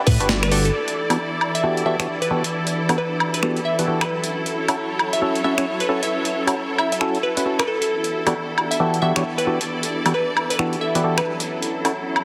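Soulful and moody, this two-step UK garage excerpt moves at 134 BPM with a swung 16th feel in E dorian, as a silky, phased string machine under a filter sweep and a biting, bright symphonic string section both pump against the beat, while a glassy wavetable pluck carries the melody through chorus and tape echo. A gritty, overdriven breakbeat kit of finger snaps, hi-hat, snare and woodblock sits up front, joined by hollow, mellow organ stabs, and a deep, rumbling detuned saw bass sounds only from 0.1 to 0.7 s, around a band accent at 0.3 s. Chords shift from A13sus4 to Em11 and F#m7, all wrapped in a lush 2.0-second hall reverb and a heavily compressed, radio-like finish.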